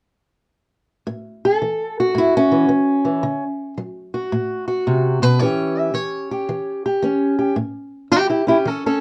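Acoustic country blues with a swaggering, rollicking mood, this short excerpt is cut from a longer piece and rides a loose swing in 4/4. A lone fingerpicked, ladder-braced acoustic guitar carries everything from 1.1 to 9.0 seconds, sitting up front with a dark, woody, boxy tone and the character of old strings. Its range stretches from A2 in the bass up to E5 on the high strings. The harmony moves from A to D7 at 3.2 seconds and on to A7 at 5.4 seconds. A moderate studio reverb gives the guitar a modest sense of space, while a worn cassette-tape quality adds a warbling pitch drift that makes the whole recording feel aged.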